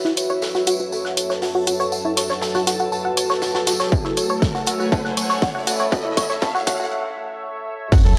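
A dry, gritty cassette-tape sound with light reverb frames this hypnotic, dark melodic techno build-up at 120 BPM, cut from a longer piece and moving from F#m to A. A moody, detuned ambient pad with chorus sustains chords beneath a tight, driving arpeggiated synth that carries phaser, tape echo and a filter sweep, while an airy, breathy pad sustains until 6.9 seconds and a riser and sub drop sit in the background. An overdriven techno kit with crash and hi-hat, a jingly tambourine and a rolled-off, mid-forward acoustic kit keep time, a distorted kick punches in up front at 3.9 seconds with a drum fill, and after a short break a fat, saturated analog bass lands on the impact at 7.9 seconds, pumping with the pads and synth.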